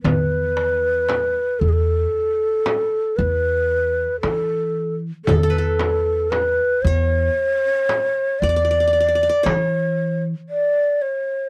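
A breathy, hollow low ney carries the melody up front over woody pizzicato upright bass, a crisp metal-shell darbuka and a small, hard-handed frame drum in this stately, festive Turkish makam ensemble excerpt in E makam hicaz, moving at 115 BPM in a straight 10/8, with a plectrum-plucked, triple-strung qanun adding a quieter second line from 5.3 seconds, all captured in a dry, close 1970s-style studio sound with moderate booth ambience.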